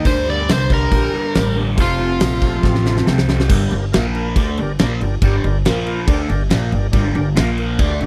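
In a straight 4/4, this smoky, gritty blues-rock and southern-rock fragment rides on a huge arena drum kit with a fat snare and punchy kick, a double-tracked crunchy guitar riff tinted by phaser, and a woody, thumpy pizzicato upright bass, while a bright fingerpicked slide guitar sings the melody until 3.1 s, a drum fill arrives at 2.6 s, and a thick tonewheel organ on slow rotary speaker holds chords in the background, all captured in a dry, close 1970s-style studio sound.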